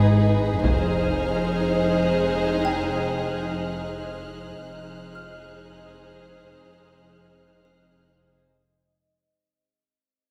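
Eerie and uneasy, this slow 60 BPM suspense film-score excerpt sets sul tasto chamber strings (a violin melody between B4 and C5, a floating violin second line, a viola accompaniment, a high violin texture, and a dark cello and double bass bass line) over a deep, detuned ambient pad with chorus, built-in reverb and tremolo, while a tinkling music box glints in the background, a band-limited taiko ensemble strikes with hard sticks only from 0.6 to 2.6 s, and the whole thing moves from G#m to Fm7 in a wet scoring-stage reverb heard from further back as it fades out across the full 8.6 s.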